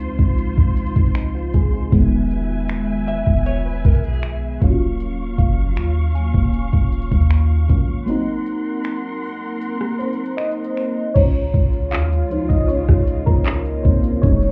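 Dreamy and smooth, this contemporary R&B excerpt in Db major moves at 78 BPM over a soft, round 808-style bass and a produced R&B kit of kick, hi-hat, snaps, handclaps, rim click and crash, while a lush, phased FM electric piano with a pad layer and a bowed, vibrato-rich string section hold chords through Dbmaj7, Emaj7, Ebm9 and a rootless Ab9, a clean direct-recorded guitar slips in brief arpeggios at 3.1 seconds, a pure synth bell glints in the background from 5.4 seconds, and after a break the electric piano takes a solo at 11.2 seconds, all heard muffled as if through a wall in club reverb.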